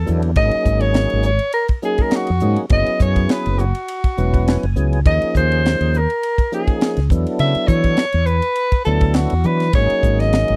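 A dry, close recording in a 1970s studio style gives this brief cut from a longer electric jazz fusion piece a tight, intimate sound, with the bass and drums sitting up front. At 102 BPM in 4/4 with a light sixteenth-note swing, the mood is soaring and funky. A soprano saxophone carries the melody in a jazz style, its tone warm with light vibrato, scooped notes and a slapback echo. Underneath, a mellow fretless electric bass sounds dark and round, direct and amped with a subtle chorus, while a tight funk drum kit plays with an airy, polished snap from a high-tuned snare and a tight kick across hi-hat and ride cymbal. A tonewheel organ fills out the accompaniment with a fat, lightly overdriven tone, key click, chorus vibrato and a slow rotary speaker, and steps forward with a fill between 4.2 and 5.1 seconds. The harmony moves through suspended ninth chords on Ab, Gb, Eb and E before returning to Ab9sus4 at 9.7 seconds.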